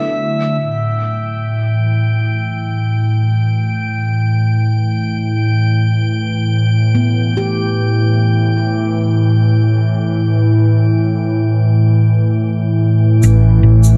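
Meditative and deep, this ambient dub excerpt floats in free time, tuned slightly below standard pitch. An up-front analog pad of detuned sawtooth and triangle tones holds sustained chords throughout, smooth and warbling with a subtle chorus, its soft attack and long release giving the harmony a vintage glow as it moves from D to A5. High above, a glassy texture of sine tones drifts with overtones, slow to bloom and bright, bathed in chorus and its own reverb until 13.2 seconds. A mellow nitrided-steel handpan, played with soft fingertips, rings briefly at the opening and returns for gentle arpeggios from 6.9 to 9.6 seconds, sitting in the background and trailing dub echo. At 13.2 seconds a dark, round hollow-body electric bass lands up front on a low A, joined by a distant, roomy shaker softened by low-pass filtering and dub echo, while a wet echo chamber reverb lends the whole space a lingering tail.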